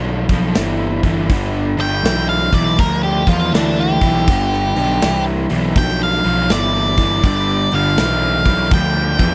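A raw, double-tracked garage guitar riff opens this gritty, driving blues rock and southern rock passage, joined at once by a growly fuzz bass that sits low under it. A big acoustic rock kit with a punchy kick, a medium-tuned snare and hi-hat comes in at 0.3 seconds, set up front in a large room sound, and the groove swings in 4/4. At 1.8 seconds a dark, distorted octave-fuzz lead guitar takes over the melody and solos through the rest of the clip. A thick, overdriven tonewheel organ slips in very quietly at 7.2 seconds with sustained chords, its key click, percussion and slow rotary speaker just audible beneath the band. The sound is dry and close, like a 1970s studio, and this short cut from a longer piece rests on a single chord throughout.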